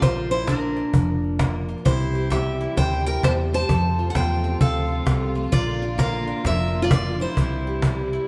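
Honky-tonk and classic country at 131 BPM with a swung 4/4 feel, this easygoing, down-home excerpt moves through Bb, C and F chords. A bright, up-front picked dreadnought carries the melody over a second, warmer acoustic guitar playing a picked accompaniment, while a dark, round, foam-muted vintage electric bass and a snappy cajon with snares drive the groove. From 1.9 s a lush, bowed studio string section adds smooth sustained chords in the background, and a moderate plate reverb places the band further back in the room.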